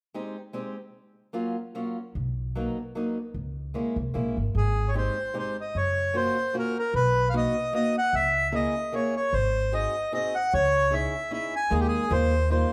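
Musette in Ab major at 150 BPM in a swung 3/4, charming and whirling, where a boxy fingerpicked acoustic archtop guitar opens the accompaniment at 0.1 seconds, a woody, thumpy pizzicato upright bass with dark steel strings joins at 2.2 seconds, and a reedy, full, close-miked accordion enters dry and up front with the melody at 4.6 seconds over chords like Abmaj7, Gbmaj7, Bmaj7 and Dbm6, all heard as a band playing live in one large studio room with moderate reverb in this short cut from a longer piece.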